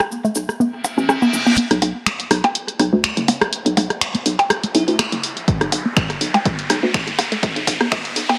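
A dry, gritty hardware recording with light digital reverb carries this sparse, quirky minimal techno excerpt in B minor at 123 BPM, with a gentle 16th-note swing. A grainy cabasa and up-front electronic rim clicks and blips in tape echo open it, joined by a bouncy square pluck riff with chorus, phaser and pumping, a knocking FM bass, and a reverse cymbal and riser that build tension. A punchy analog drum machine with finger snaps and filtered hi-hats enters at 1.6 s, a sparkling, warbling FM electric piano note flickers in the background at 4.7 s, and a punchy electronic kick arrives at 5.5 s as filter sweeps drive the build-up.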